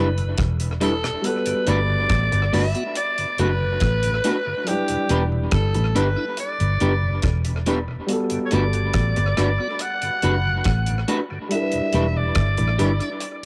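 A raspy alto saxophone leads this sweet, romantic lovers rock reggae excerpt at 70 BPM in G major, carrying the melody up front over a dark concert grand piano, a tonewheel organ, a slightly broken-up electric guitar and a round, foam-muted fingered bass, with a deep reggae drum kit joining at 0.2 seconds. The saxophone is edgy and gritty with pop-style vibrato, yet sounds distant and roomy, and it shares cassette tape colour and analog delay with the mellow, short-sustained piano, the picked guitar stabs and the drums. The organ sits in the background with a piping, scooped tone, audible key click and a slow rotary speaker, while the dark, amped bass stays prominent and dry of effects, anchoring the low end. The acoustic kit keeps a tight kick alongside hi-hat and rim click in a straight 4/4 feel. The harmony moves gently between Em7 and Gmaj9, and the whole home-made cassette recording sits in light, small-room reverb.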